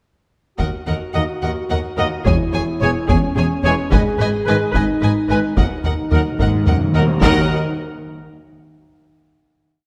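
A heavy-stick taiko ensemble drives a big drum ostinato in a steady 6/8 from 0.6 seconds, giving this short, complete epic orchestral film cue a relentless, dark pulse. Bowed strings enter together: a lush, focused violin section carries the melody in repeated notes with vibrato, while a softer, expressive second violin line, a distant, even viola section and a smooth-topped cello section sit in the background with sustained chords. The cellos hold the bass with repeated notes and answers at phrase ends, doubled by a rich, bowed double bass section, as a mellow, tight French horn section sustains chords beneath. At 1.1 seconds a clear, roomy solo trumpet and a bright, close-miked but very quiet trombone section add short accented chords and held harmonies over a brooding progression of Ebm, Dbm/Fb and Abm. Timpani with soft mallets and round calf heads roll through a fill from 5.6 seconds, leading the theme into a final chord that rings in a moderate concert hall reverb as the taiko carries on briefly beyond the other parts.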